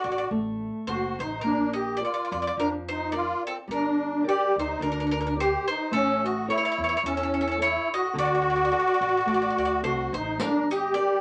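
A lightly swung 4/4 at 107 BPM carries this passionate, wistful Italian folk serenade in G minor, where a bright, double-strung bowl-back mandolin sings the melody up front beside a reedy, shimmering musette accordion second line, while a small, fingerpicked nylon-string guitar with old strings and a woody pizzicato upright bass support from beneath, a riq adds a brief flick of jingles at 10.4 seconds, and a club reverb gives the room a wet glow.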